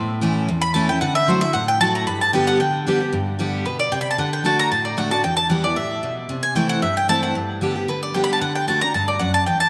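Bluegrass in G major at a brisk, lightly swung 227 BPM, this joyful, virtuosic fragment of a longer piece sets a full-bodied picked dreadnought guitar with audible finger squeak under a bright, woody, double-strung mandolin that enters at 0.6 s with a solo running to 3.1 s, its lead carried on a diffuse ambient delay, while a lush hall reverb soaks the whole mix in a dreamy glow as the chords move from A and Dadd9 through Em and C6 back to G and D.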